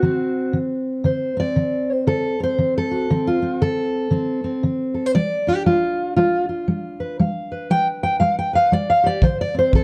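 Soulful and gritty, this short cut from a longer acoustic country blues piece rides a swung 4/4 feel, with a full-bodied jumbo steel-string guitar fingerpicking the melody up front through plate reverb, finger squeak audible on the strings. The guitar carries the passage alone over D7 and G7 harmonies until a punchy, small-room kick drum played with brushes arrives at 9.2 seconds. The production is dark, with a moderate studio reverb.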